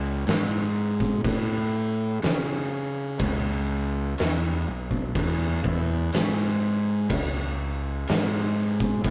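A slow, straight 4/4 pulse at 62 BPM drives this sludgy, ominous stoner and doom metal passage in C# minor, tuned to A4 = 442 Hz and cut from a longer piece. A fingered electric bass opens at 0.0 s, its overdriven fuzz tone growly and punchy as it moves between B1 and C#3, sitting up front. An oversized, low-tuned acoustic drum kit joins at 0.3 s with kick, snare and crash cymbal. The kit sounds gritty and saturated in a bright stone room, pairing a fat snare and a punchy kick with dark cymbals. Both parts carry on together to the close at 9.1 s. The rough rehearsal-room recording has tube saturation and light reverb, giving the whole a heavy, raw weight.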